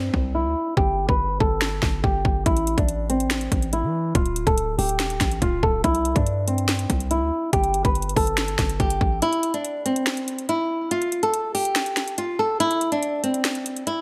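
Dark, melancholic trap at 142 BPM in a half-time feel, this excerpt sets a fingerpicked, up-front acoustic flamenco guitar with audible finger squeak under a filter sweep, moving through C, Gsus2, Am and D5, over a punchy, heavy 808 bass with a noise layer, a fast attack and a decaying tail, while an electronic trap kit of hard-clipped kick, sharp snare, metallic hi-hats and finger snaps drives the groove; at 9.2 seconds the bass drops out and the kick is muted, all in a bright, lightly reverberant 1980s-style digital sound.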